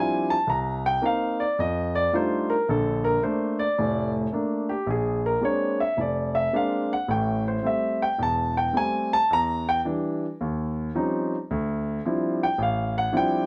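Solo jazz in a moody, late-night vein, this 13.5-second excerpt features a warm concert grand piano alone at 109 BPM in 4/4, swung and played with rubato, its deep bass and long sustain sitting up front in light reverb as the harmony moves from Cm7 and F13 through Bbmaj7, Am7 and Eb13 before settling on Dm11.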